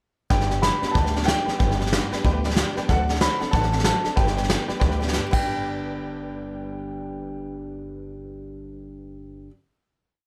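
A short, rollicking rockabilly piece opens at 0.3 s with a dark, mellow upright piano carrying hook phrases through a slapback echo, over a jangly, detuned honky-tonk upright piano chording in eighths, a full-bodied steel-string acoustic guitar strumming open shapes with audible finger squeak, and a woody, thumpy upright bass playing root and fifth on a swung two-beat. A roomy brush kit drives a train-beat groove, with a punchy kick and crash cymbal, until a fill at 5.1 s leads into the final hit at 5.5 s, after which the drums fall away and the other parts ring out in light reverb.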